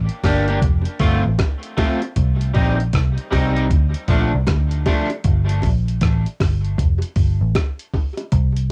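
A dark, round muted electric bass opens this heavy, spacious dub reggae excerpt, sitting up front and deep in its low register with an amped, foam-muted tone. Within moments a dusty, sampler-style drum kit joins with a thumpy kick, hi-hat and rim click, sounding compressed and gritty as if re-recorded in a small room, riding a lazy swung sixteenth-note feel. An electric guitar at the edge of break-up adds twangy picked accompaniment, bathed in lush chorus, tape echo and cassette coloring, before dropping out at 5.1 seconds. Tight, high-tuned bongos sit lower in the mix with their own tape echo, carrying on until 8.3 seconds. The harmony cycles through Gm, F, Cm and Dm before returning to Gm and F, all within a light reverb and the hazy character of a home cassette recording.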